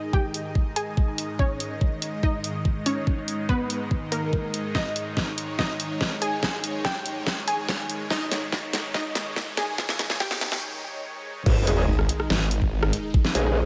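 At 143 BPM in a half-time 4/4 feel, this aggressive, menacing heavy wobble dubstep clip builds for 11.5 seconds under a filter sweep, with a lush detuned sawtooth pluck melody carrying subtle chorus and delay, a slow-attack supersaw pad pumping through a phaser, a knocking layered kick, and an overdriven drum kit with a deep snare, crash, hi-hat and rim click, plus a very quiet riser and sub drop, before a drum fill and a brief break lead into the drop. There, a saturated wobbling growl bass lands with an impact at 11.5 seconds, followed by a bold, ring-modulated orchestra-hit-like stab set back in reverb at 11.7 seconds and a snarling distorted saw bass at 11.9 seconds, all in a light digital ambience.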